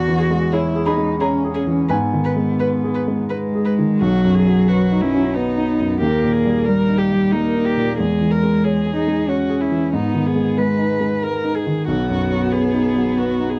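Neoclassical piano and strings in a rubato 3/4, reflective and longing, where a dark, intimate cello carries the second line with vibrato and a smooth top, a close viola joins at 0.2 s with an airy sul tasto bow, and an up-front grand piano with short sustain accompanies beneath light reverb, the passage shifting into a new section at 4.0 s in this warm excerpt from a longer piece.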